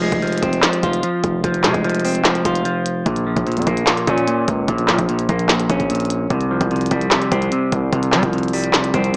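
A clean, hollow-bodied semi-hollow electric guitar sits up front through a low-pass filter, its fingered accompaniment moving over Fm, Bbm and Csus4 above a menacing, dark half-time trap groove. Underneath, a heavy, saturated 808-style bass with a gritty noise layer hits with a fast attack and decays. A glitchy, overdriven drum kit enters at 0.1 seconds with a deep kick, a tiny snare, clicky hi-hats and handclaps, all under light reverb and a small-speaker sound in this short hip hop excerpt.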